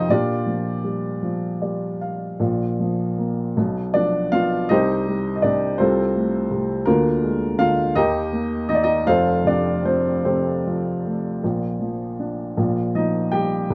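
A dark, woody upright piano sits up front in this calm, lyrical classical fragment, playing alone in a gently flowing 6/8 with free, rubato timing. After a short fill at 1.2 seconds, the opening phrase returns at 2.4 seconds and moves through mellow, songlike harmony until the excerpt breaks off at 13.7 seconds. Close, detailed miking and light reverb keep the instrument's natural tone intimate.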